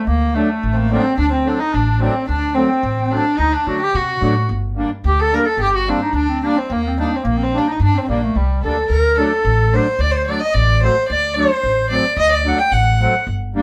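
Festive yet soulful, this klezmer passage at 109 BPM in 2/4 is cut from a longer piece, with the clarinet leading the melody in a vintage, jazz-style voice full of vibrato, soft attacks and scooped notes, while a close, nasal violin with an airy bow and gut-string tone carries a second line up front. Beneath them, a woody, thumpy pizzicato upright bass enters at 0.1 s and a sweet, dark accordion with light tremolo tuning joins at 0.4 s. The harmony moves from D to G minor and E-flat before returning to D as the phrase begins again at 8.9 s, all captured as a band playing live in a small room with a wet, short reverb.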